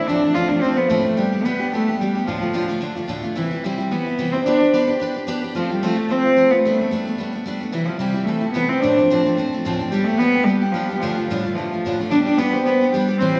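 Set in a reverberant church or concert hall with a lingering 1.7-second tail, this spirited Celtic reel drives along at 219 BPM in 4/4 with a light swing on the eighth notes. A bowed cello carries the melody up front, its dark, reedy gut-string tone and smooth top suggesting a period-style single player. A concert harp adds a bright, ringing second line above it, fingerpicked in a higher register. A jumbo steel-string acoustic guitar, also up front, supplies full-bodied picked accompaniment that spans from deep bass notes into the midrange. The harmony circles through chords such as Dm7, G, C, F and Gadd9, repeating its opening phrase before a new section arrives at 12.1 seconds. All three instruments play together throughout this short cut from a longer piece, which ends at 13.4 seconds.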